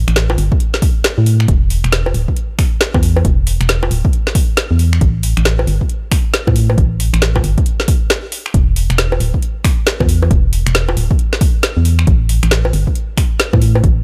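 UK garage in a two-step shape, this short cut from a longer piece moves at 136 BPM in E minor with a 62% swing on the 16th notes that gives it a bouncy, late-night lilt. An organ-like FM bass carries the low end from the very start, its hollow, percussive tone striking quickly and then decaying, dark and set up front. A garage drum kit of bongos, finger snaps, hi-hat and snare comes in almost at once, layered and produced, with a woody snare and metallic hats sounding as if re-recorded in a small room. An analog electronic kick joins at 0.5 seconds, punchy and close, anchoring the groove. A brief break around 8.1 seconds interrupts the pattern before it carries on, and the whole mix stays dry and intimate, with little reverb.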